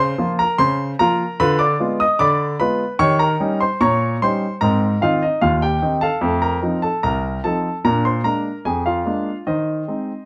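Set in a moderate club reverb, a polished, up-front grand piano with short sustain plays this lively, jaunty ragtime passage alone, a 10.3-second cut from a longer piece in straight two-four, ranging from C2 to Eb6 over a progression that moves through Ddim7, Eb7, F7 and Bb7 before settling on Ab/Eb.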